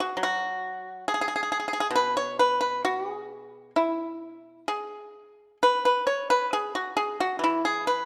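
A bright, percussive solo pipa, played with fingerpicks and placed up front, carries this elegant, flowing fragment of Chinese traditional music in E gong mode, moving in a free rubato around 63-70 BPM in 4/4 across a range from B2 to C#5, shifting into a new section at 5.6 seconds, with a moderate recital-hall reverb and a dark overall production surrounding the close, dry instrument.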